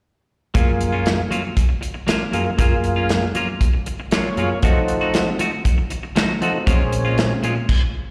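Brooding and mournful, this short cut from a longer piece is a straight-eighth soul blues at 118 BPM in 4/4, captured live at a gig through the venue's PA with the light reverb of a recital hall around it. A smooth tonewheel organ carries the accompaniment from 0.5 seconds, its chorus vibrato and slapback echo giving the chords a gentle shimmer, and it breaks into a brief fill between 3.9 and 4.6 seconds. A clean electric guitar, bright and twangy with a picked, compressed attack and its own slapback echo, punctuates the groove with stabs. Underneath, an acoustic soul drum kit with a tight kick, medium-tuned snare, hi-hat and dark crash cymbal sits in a small-room sound with a rolled-off top. The harmony moves from Gbmaj7 to F7b9 and settles on Bbm7, with all three parts placed up front in the mix.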